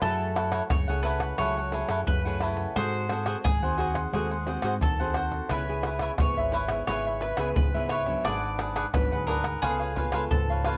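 A crisp, picked cavaquinho sits up front in this festive, sunny samba and choro excerpt at 87 BPM in 4/4, playing accompaniment alongside a full-bodied, fingerpicked classical nylon-string guitar with audible finger squeak and a bright, double-strung bowl-back mandolin on a second line, all three carrying a cassette tape character, while a dark, round, punchy fingered electric bass and close, dry percussion of egg shaker, tight surdo, pandeiro and tamborim drive the 10.8 seconds through F#m9, G#7b9, C#m7 and G#m7b5 to C#7b13, framed by light reverb and small-room ambience in a home cassette recording.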